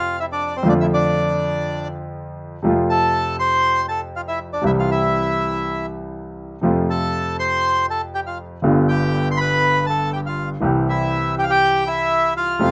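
Tango in F major at 121 BPM in 4/4, played with a passionate, sultry rubato feel, in this short passage cut from a longer piece. A reedy, full bandoneon carries the melody from C4 to C6, close-miked, dry and up front, while a baby grand piano with a natural, warm tone accompanies from G1 to G4, also close in the mix. The chords move from Fmaj7 through Dm/F, F, C and G7 before settling on C, in a moderate studio ambience with a rough home-demo character.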